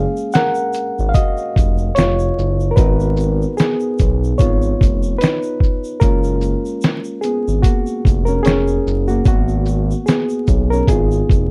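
A relaxed 74 BPM groove in 4/4 with a 16th-note swing anchors this reflective, hazy lo-fi hip hop excerpt, where a muffled, pitched-down sampler drum kit with a thumpy kick sits up front, a smooth, nasal synth bass holds the low end, a faint grainy egg shaker enters at 0.2 seconds, and a reedy electric piano carries the lead through a low-pass filter over jazzy chords like F#maj9, G#m9 and C#9, all wrapped in light reverb, dark production and vinyl crackle.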